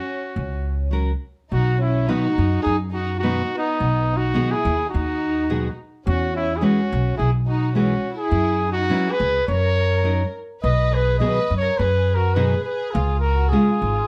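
Mexican folk mariachi in B major at 105 BPM, proud and romantic, cut from a longer piece: a roomy, classical-style trumpet carries the melody with plate reverb over a dark, sul tasto violin section bowing a smooth second line, while a woody pizzicato upright bass enters at 0.4 seconds and a full-bodied fingerpicked nylon-string guitar joins at 0.9 seconds, moving through chords such as G#m7/B, E6 and F#7sus4 in a moderate studio room.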